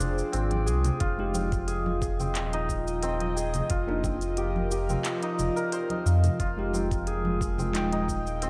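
Meditative and earthy, this organic downtempo piece moves at 89 BPM in F dorian, built on a deep, round sub bass up front and a bright, shimmering santur playing filtered, delayed arpeggios over an airy, breathy pad with chorus and sidechain pumping. An electronic kit of handclaps, crisp hi-hat and shaker sits alongside soft-handed congas and bongos in the background, while a gritty, thumpy kick enters at 1.0 s and a clean tine electric piano, played through a combo amp with analog chorus, delay and a filter sweep, joins at 1.2 s. The chords move from Fm6 through Fm7 and Cm7/F, and moderate plate reverb soaks the mix in a dreamy haze.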